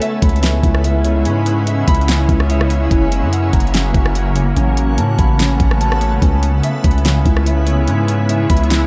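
An ethereal, melancholic cloud-rap excerpt in C# minor opens with a shimmering ambient pad holding sustained chords, its detuned, warbling tone given an octave-up shimmer, chorus, reverb and sidechain pumping. A concert harp plays ringing, thumb-plucked arpeggios through a low-pass filter and delay, while a reversed, dreamy texture with soft attack sits in the background with its own reverb. A smooth R&B drum kit sets a half-time 4/4 feel at 145 BPM, with a knocking kick, fat snare, metallic hats and rim clicks, tape-tinged and up front. A deep, sine-toned 808-style bass enters at 0.2 seconds with long, decaying notes. The chords move from C#m7 to F# and Aadd9 before returning to C#m7, and the mix is dry overall apart from the reverb on the pad and the reversed texture.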